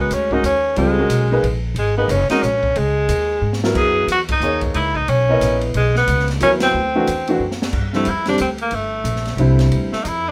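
Swinging in 3/4 at 181 BPM, this hypnotic, cool modal jazz excerpt in C# dorian places a clear, vintage tenor saxophone up front, with light vibrato and scooped notes, over smooth grand piano chords with short sustain, a woody, thumpy pizzicato upright bass on gut strings, and a small-room acoustic drum kit with dark cymbals, a high-tuned snare and a boomy kick, marked by drum fills at 3.4 and 7.4 seconds before the harmony moves to G13sus4 at 7.7 seconds.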